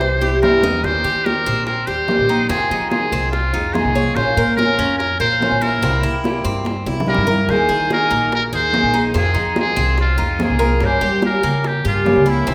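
Heard in a concert hall with a moderate reverb, this short cut from a longer Cuban son and guajira piece feels nostalgic and sultry. Up front, a trumpet with a metal mute carries the melody in a brilliant, buzzy, thin, vintage jazz style, with soft attacks, scooped notes and vibrato shaping the solo line. A woody pizzicato upright bass on steel strings also sits forward, while the Cuban tres plays metallic picked arpeggios on double strings, some doubled at the octave. An old ladder-braced acoustic guitar adds dark, boxy picked accompaniment on aged strings. In the background, round, low-tuned bongos struck with hard hands and ringing, high-tuned, compressed and saturated congas played by gentle hands carry the percussion, with drum fills at 0.2 and 6.7 seconds as the chords move from Fm7 and Bbm through C7 toward a closing Gdim.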